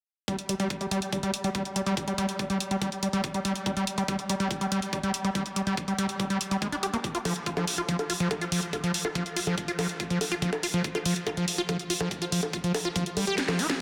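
Alien and psychedelic, this psychedelic trance excerpt runs at 142 BPM in a straight 4/4. A screaming, squelchy sawtooth acid riff sits up front, its resonant filter sweeping throughout. It is aggressive and distorted, thickened with chorus, pumped by sidechain and trailed by dub echo. Beneath it, a layered electronic kit of bongos, bright hats and a cracking snare pairs with a knocking kick, both re-recorded in a small room. The kick drops out at 13.4 s for a closing drum fill, all inside a lush digital hall reverb and a dense, heavily limited master.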